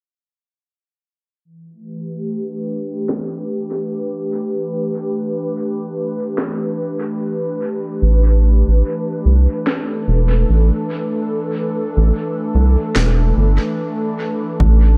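Hazy and meditative, this ambient dub excerpt drifts at 73 BPM in 4/4 with a swung sixteenth-note feel, cut from a longer piece. An airy, breathy pad with a soft, nasal edge and detuned chorus holds sustained chords from 1.4 seconds, built on an A7(no3) harmony while a filter sweep moves across it through most of the passage. A woody, tape-toned electronic snare, re-recorded in a large room and trailed by dub echo, sits low in the mix from 3.1 seconds. At 8.0 seconds a round, deep analog bass arrives up front, dark and sustained with a fast attack. A very quiet, overdriven electronic kick lands briefly near the close, and the whole mix is echo-heavy, low-pass filtered and touched with light reverb.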